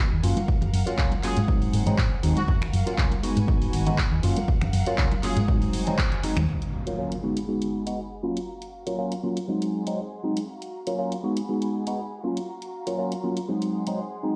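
A punchy electronic kick thumps up front at 120 BPM in 4/4, with a light swing on the sixteenths, while a dry analog drum machine adds finger snaps, handclaps and pumping hi-hats in this sunny, funky stretch of filtered disco house in F# major, cut from a longer piece. A dark, round hollow-body bass with tube saturation, plus tambourine and congas sitting in the background, drive the groove through the first 6.5 seconds, and the parts share a band accent at 6.0 seconds before the kick, bass and percussion drop out. A clean tine electric piano, colored by a phaser, carries the F#maj7, G#7 and G#m7 changes throughout, alongside a biting, intense violin section holding sustained chords through gritty 12-bit sampler texture. A brilliant horn section states a short melody early on, treated with the same sampler grit and a dub echo, and an electronic impact sounds from 6.5 to 8.5 seconds as the piano, violins and drum machine carry on. 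Much of the mix breathes with sidechain pumping and sits in a large reverberant space, as if played on a big sound system in a bare room.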